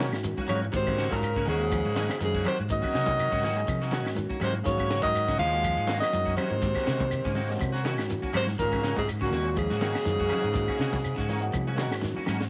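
Funky and driving, this afrobeat excerpt puts a breathy, whispered alto saxophone up front over a very quiet, bright trombone and a punchy baritone saxophone set back in the mix. Beneath them, a gritty, overdriven reed electric piano with phaser, a twangy, slightly broken-up guitar playing arpeggios, a scooped, clean guitar with chorus playing stabs, a dark, round fingered bass and a tight, dry funk kit with a high-tuned snare all ride an Ab9sus4 chord, while ringing congas, grainy shekere and woody claves sit in the background and a drum fill closes the passage at 12.0 seconds.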